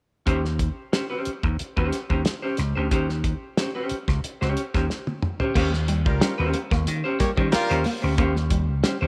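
Funk in Eb mixolydian at 91 BPM in a straight 4/4, this short excerpt from a longer piece feels funky and energetic from the start. A clean, picked semi-hollow electric guitar with a hollow-body tone plays the accompaniment up front, joined by a punchy, amped vintage slap bass and a cloth-damped, thuddy acoustic drum kit with dark cymbals, a medium-tuned snare, a tight kick and a rolled-off top. The opening section rests on an Eb6 chord, and a drum fill from 4.9 to 5.6 seconds leads into a second section built on Eb13. At 5.6 seconds a slightly broken-up, compressed electric guitar enters in the background with a picked riff bathed in spring reverb. A smooth-topped horn section with light vibrato adds a second line in a pop style from 6.1 to 7.8 seconds. Light reverb and a small room ambience frame the whole performance.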